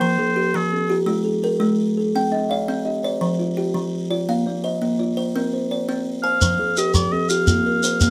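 Close, detailed microphones and light reverb frame this rippling, warm Southern African traditional piece, an mbira-style interlocking cycle in 12/8 at 112 BPM in F equiheptatonic, tuned to A4 = 441 Hz. A bright, buzzing kalimba with a woody thumbnail pluck sits up front beside a mellow, ringing second kalimba in a boxy small room, both spinning arpeggios throughout over chords moving from Fm through Cm, Bb and C7sus2. A vintage, classical-style solo oboe sings the melody briefly at the start and returns at 6.2 seconds, joined at 6.4 seconds by a grainy shekere.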